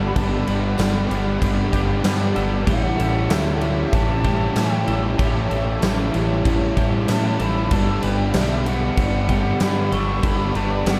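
A growling, overdriven fingered bass sits up front in this blissful, dreamy shoegaze and dream-pop excerpt at 95 BPM in G lydian, with a huge, punchy arena drum kit with a fat snare and bright cymbals arriving at 0.2 seconds and a jingly, saturated tambourine tucked very quietly beneath from 0.8 seconds. Three overdriven guitars churn out riffs in the background: a double-tracked electric soaked in spring reverb and two hollow-bodied semi-hollows, one very faint and one trailing reverse reverb. A very quiet, compressed twelve-string traces clean arpeggios, a brassy, detuned analog pad holds chorused chords over Gmaj7 and A7, and at 2.7 seconds a mellow, airy jazz flute with vibrato and delay floats in, all drenched in a vast ambient reverb.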